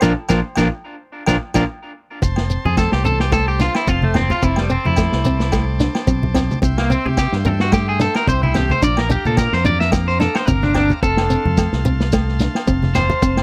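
A twangy, slightly broken-up electric guitar sits up front with tape echo, playing arpeggios through this carefree, danceable highlife guitar band excerpt in F major at 109 BPM, with a lightly swung 16th-note feel. It opens with a band accent before a clean electric guitar solo comes in at 2.2 s, joined by a buzzy overdriven combo organ holding sustained chords with light vibrato, and soft-handed, low-tuned congas entering in the background at 2.7 s. Underneath, a small, bright fingerpicked nylon-string guitar, a round fingered electric bass, a punchy vintage drum kit with a rolled-off top, a grainy shekere and ringing agogo bells fill out a dry, close 1970s-style studio sound.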